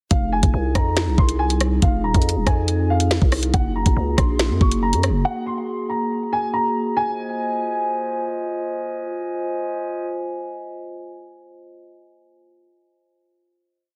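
Tense and ominous, this short half-time drill piece sets a dark, boxy grand piano loop, filtered and echoing through delay, over glassy, ethereal glass harmonica chords that move from Fm7 to Gbadd9. From the start, a knocking drill kit sits up front with skipping hi-hat rolls, 12-bit sampler grit and a clipped snare layered with finger snaps, driving the hook beside a growling, buzzy 808 bass whose long sliding sub notes follow the kick until both drop out near 5.1 seconds. The piano loop ends at 8.2 seconds, leaving the harmonica to hold a final Fm7 until 10.1 seconds in a dense, heavily limited master with light reverb.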